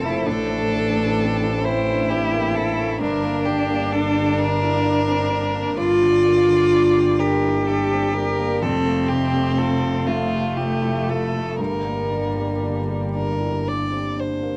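An intense, up-front bowed cello carries the second line with vibrato through a tape echo and cassette grain, stopping at 14.1 s, while a focused, rich violin sings the melody above it in this longing, melancholic neoclassical piece for piano and strings, unfolding in a rubato 6/8 over chords moving from Am to Gm, F and back to Gm. Beneath them, a soft felt-muted upright piano with audible action noise and a cassette-tape tint plays the accompaniment. A distant bowed double bass with portamento and tube saturation holds the low end, and a very quiet, warbling, detuned pad with chorus sustains nostalgic chords, all heard in a wet booth on a home cassette recording that is cut from a longer piece.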